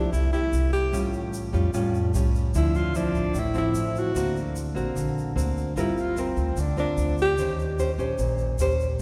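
A straight 4/4 bossa nova groove at 149 BPM in D minor carries this intimate, wistful fragment, with a breathy, close-miked alto saxophone playing a subtone jazz melody with vibrato up front until 7.6 s over fingerpicked classical nylon-string guitar, a woody, thumpy pizzicato upright bass on gut strings and a faint, grainy egg shaker, set in a wet church reverb as chords such as Fmaj9, A7alt and Dm9 drift past.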